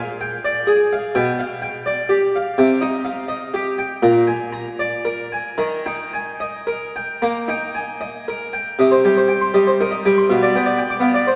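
Bathed in a long, wet church reverb, a solo harpsichord with an airy, plucked Italian-style voice sounds full and up front on two sets of strings, playing a solemn, introspective baroque-style suite movement in Eb major and a rubato 12/8 at roughly 74-86 BPM, spanning Bb2 to D6 through chords from a rootless Bb7 to Cm, Bb7 and Eb before this short cut from a longer piece returns to Cm and G7/B at 10.3 seconds.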